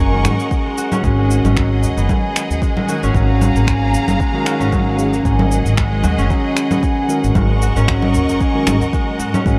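Lush, clear bowed strings hold sustained chords with sidechain pumping as a ringing, fingerpicked concert harp arpeggiates through tape echo and a woody, growly pizzicato upright bass sits up front, opening a hypnotic, mystical stretch of organic downtempo at 114 BPM in G# dorian with a light 16th-note swing. A mellow tine electric piano joins almost at once with pumping and echo of its own, followed by electronic finger snaps, congas and cabasa at 0.2 seconds and a deep, layered electronic kick at 0.5 seconds. The chords move through D#m7, G#m7 and F#maj9 in a dark, small-room production.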